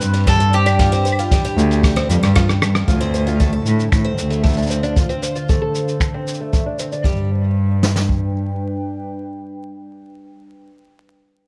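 A dark, bowed cello with smooth vibrato carries the bass up front in this playful folktronica excerpt at 115 BPM in G mixolydian, beneath a warbling, detuned tape-like pad of sustained chords, a woody, octave-doubled picked twelve-string acoustic guitar playing arpeggios through a low-pass filter and tape echo that gets a filter sweep from 2.9 s, a bright bowl-back mandolin melody with tape echo that stops at 2.3 s, an acoustic jazz brush kit of boomy kick and snare, and a muffled, compressed sampler-style kit of cabasa, claves, finger snaps, hi-hat and rim click, with a drum fill arriving at 1.8 s, all over a small-room ambience of vinyl crackle.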